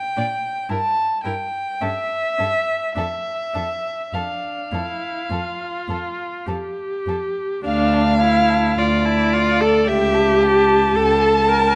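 Solemn and yearning, this slow romantic string quartet movement in D minor moves with a rubato feel at 50-58 BPM, its muted violins, viola and cello all veiled and dark, with a nasal, lightly vibrato first violin singing the melody from the start, a second violin adding portamento to its line, an up-front viola filling the accompaniment, and a close cello sliding through the bass, all set in a moderate recital hall reverb captured by close, detailed microphones as the harmony shifts from Bb through Em and Dm/F toward a new section at 7.7 seconds.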